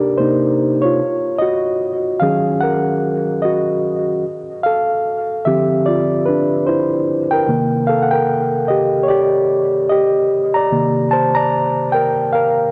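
A 74 BPM hip hop groove in 4/4 sways on a swung sixteenth-note feel, setting a nostalgic, reflective mood. A reed electric piano carries the whole passage alone, from 0.0 to 12.7 seconds, ranging from C3 up to Bb5. Its tone is reedy and clean, heard through its built-in speakers and placed up front, shaped by a low-pass filter and an analog delay. The harmony drifts through rich minor ninth chords, moving from Cm9 to Ebm9 and Dm9 before settling back on Cm9 at 7.5 seconds. A long, wet plate reverb soaks the dreamy mix, and a cassette tape character adds a hazy, worn patina to this short fragment of a longer piece.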